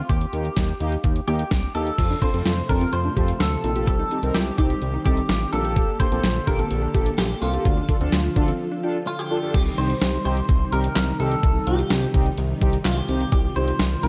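A steady, straight 4/4 pulse at 127 BPM drives this nocturnal synth-pop excerpt in C dorian, set by a detuned 8-bit digital drum machine up front with a thumpy kick, medium-tuned snare, handclaps, hi-hat and crash cymbal carrying a tape-warm, small-room character. Beneath it, a fat, thick analog bass with a sawtooth edge and filter sweep holds the low end from the opening, while a clean, twangy electric guitar picks out the melody through analog chorus and slapback echo. Bold, brassy analog synth brass adds accompaniment almost at once, its wave-folded tone softened by vibrato and chorus. At 2.0 seconds a warbling, vintage string machine of violas settles in behind with sustained chords, and a round, bright analog pluck begins arpeggios that run until 9.5 seconds, the close of a short break starting at 8.6 seconds. Chords move from Eb through F, Cm, Gmadd9/Bb and Dm before landing back on Cm, all wrapped in light reverb and a dark, warm production.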